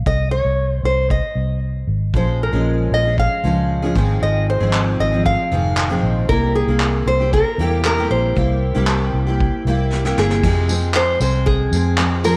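A straight 4/4 pulse at 116 BPM comes from a vintage brush drum kit with dark cymbals, a punchy kick, snare, handclaps, tambourine and crash, alongside a round, foam-muted fingered electric bass that starts at 0.0 s. In this wistful, tender acoustic pop fragment in F minor, a bright, fingerpicked nylon-string guitar carries the melody from 0.1 s over an opening Cm. At 2.1 s a full-bodied, double-tracked steel-string acoustic guitar joins, picking accompaniment through Bbm7, Fm7/Ab and C7. A drum fill leads into a new section that settles on Fm, the whole piece set in a moderate echo-chamber reverb.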